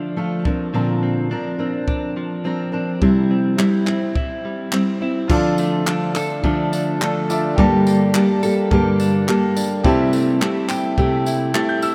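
A fingerpicked steel-string acoustic guitar, dark and up front with audible finger squeak, carries the accompaniment in this tender, reflective acoustic pop excerpt in D minor at 106 BPM, alongside a clean, compressed electric guitar playing arpeggios through lush chorus, a compact cocktail drum kit with a punchy kick, handclaps, tambourine and dark crash cymbal from 0.5 seconds, and a brilliant, woody upright piano with long sustain entering in the background at 5.3 seconds, all set in a vast, echoing cathedral reverb as the chords move from Bbadd9 and C to Dm, Gmadd9 and C6.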